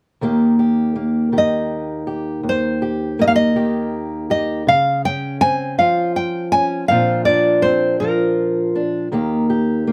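A light reverb surrounds this short acoustic folk-pop ballad cut from a longer piece, carrying a nostalgic yet hopeful mood in a straight 6/8. An old ladder-braced acoustic guitar with dark, woody, boxy old strings fingerpicks the accompaniment from 0.2 seconds, moving from Eb through Dbmaj7 and Bbadd9 before returning home. At 1.4 seconds a fingerpicked nylon-string guitar with fresh strings and a deep classical tone enters up front with the melody, ending at 8.8 seconds.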